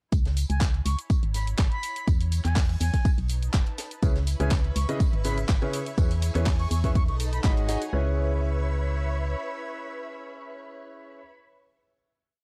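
A piano house groove at 123 BPM in C# minor rides a lightly swung four-on-the-floor, with a punchy, overdriven electronic kick up front, a layered garage kit of closed and open hats, cabasa and claps, and a very quiet, dry funk breakbeat with a high-tuned snare and tambourine tucked underneath. A hollow, organ-like FM bass with a fast, decaying attack pumps in dotted rhythms through the low end, while a veiled, con sordino string section fades in from the start, its slowly shifting bowed chords breathing with the sidechain. Over this, a reedy silver flute with a soft attack and vibrato plays short answering phrases with tape echo from 0.5 seconds. At 4.0 seconds a clear concert grand piano enters with close-voiced, dotted-rhythm chords and long sustain, joined by a shimmering vintage string machine pad with ensemble chorus, both cycling through C#m7, E6 and B7. The drums and flute drop away by about 7.9 seconds, leaving piano, pads and bass to hold a final C#m7 chord in a dark studio reverb, giving this short, energetic and soulful piece its close.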